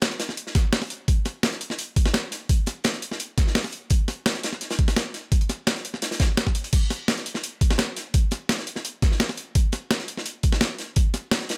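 The excerpt opens on two breakbeat kits at once: a sampler-style kit up front, compressed and pitched up, with crash cymbal, hi-hat and a medium-tuned snare carrying a tape-like grit, and a darker, saturated acoustic kit sitting in the background with a rolled-off top and filtered hats and snare. This is drum and bass at 170 BPM in a straight 4/4, with a rolling, lush mood. At 0.6 seconds an electronic kick drum arrives, layered and overdriven, with a knocking attack that sits prominently at the front of the mix. The kick was re-recorded in a small room, and a modest room ambience surrounds the drums, giving the layered breaks a close, boxy depth. The kick drops out at 11.0 seconds, leaving the two breakbeat kits to carry through to the end at 11.6 seconds.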